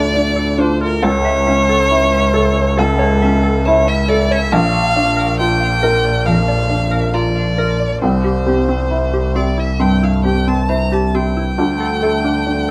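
A rich, bowed violin carries the melody up front with smooth vibrato, over a soft, felt-muted upright piano and a bowed double bass in the low register, in this reflective, longing neoclassical piece in D minor at 68 BPM, played rubato in 4/4 with tuning at A4 = 435 Hz. A glassy, crystalline wavetable pluck adds decaying, detuned arpeggios in the background, warbling with chorus. The ensemble sounds like it is playing together in one room with moderate studio reverb, moving through Dm, A/C#, Bb and C before landing on D5 at 11.6 seconds in this short section cut from a longer piece.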